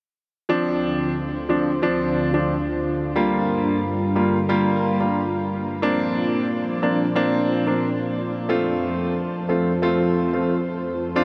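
Tough and sultry, this dancehall excerpt moves at 90 BPM in D minor, with a warm grand piano playing accompaniment and a lush, detuned, chorused unison pad holding thick sustained chords through Dm7, Gm7, Bbadd9 and F from 0.5 to 11.2 seconds, all soaked in a huge ambient reverb for a dreamy sound.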